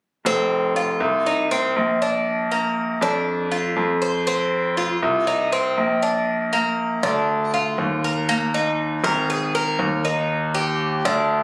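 Recorded on a phone in the room and finished with a light studio reverb, this short cut from a longer piece has an intimate, close feel, with both instruments placed up front. It is a sunny, warm Latin number in the Cuban son and guajira vein, moving at 120 BPM in a straight 4/4 and tuned to A4 = 438 Hz. A brilliant baby grand piano carries the bass line low in its register, its long sustain ringing under audible action noise. Over it, an acoustic Cuban tres picks arpeggios on metallic double strings, some doubled at the octave, giving the texture a bright edge. The harmony sways between F5 and Bb, then shifts at 8.3 seconds to Absus2 and Eb before the clip ends at 11.4 seconds.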